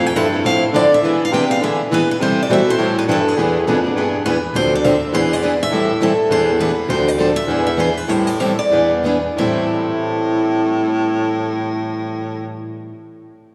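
A swung 4/4 pulse at 174-205 BPM drives this bittersweet excerpt of jazz manouche. A bright, picked steel-string guitar carries the melody up front with finger squeak, while two mellower picked steel-string guitars play accompaniment in the background. A warm baritone saxophone with subtone and vibrato holds the bass line, and the harmony settles into A minor from 4.5 s, moving through chords such as Am9, E7#9 and Dm7. The tempo slows between 6.9 and 9.4 s, all within a wet, lingering church reverb.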